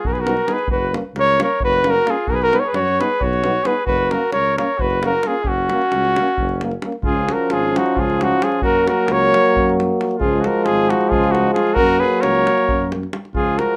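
A clear, classically styled flugelhorn carries the melody up front in this exuberant, virtuosic Balkan brass band piece in 7/8, cut from a longer performance, with a light-vibrato trumpet softly adding a second line in the background. A dark tuba anchors the bass with a smooth top, while a distant, roomy euphonium bathed in plate reverb and a shadowy French horn fill out the accompaniment over the deep, acoustic thud of a davul in a small room. The harmony shifts to a new section at 7.0 seconds, and the whole band sits in moderate studio reverb with the rough feel of a home demo mix.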